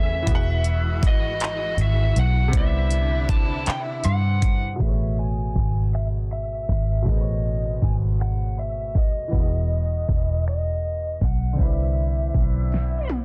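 Tender and intimate, this slow six-eight R&B excerpt moves at 53 BPM, with a dark, overdriven lead guitar singing the melody over a clear, worn grand piano and a lush, bowed string section that holds sustained chords until 4.8 seconds. A round, foam-muted electric bass and a layered pop drum kit with a knocking kick, fat soft-clipped snare, crisp hats, finger snaps, handclaps and toms sit up front, the kit entering at 0.3 seconds. The piano plays a fill before a filter sweep opens the second section on Amaj9, and a drum fill closes the passage at 12.7 seconds, all within a dry, dense, heavily limited mix.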